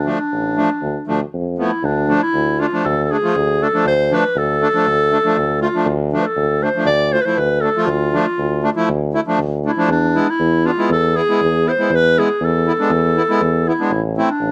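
Soulful and bittersweet, this short klezmer excerpt moves at 119 BPM in a straight 4/4, set in D dorian with a raised fourth. A clear, classical-style clarinet carries the melody up front, singing between D4 and D5 across the full 14.5 seconds. Beneath it, a reedy single-reed accordion with dry tuning holds the accompaniment in a mid-forward position, stopping just before the end at 14.3 seconds. The tuba anchors the bass with a punchy, vintage tone and scooped notes, ranging from A1 to F2. The harmony rests on D minor before shifting to E at 9.9 seconds and settling on A minor at 13.9 seconds, all captured by close, detailed microphones in a light reverb.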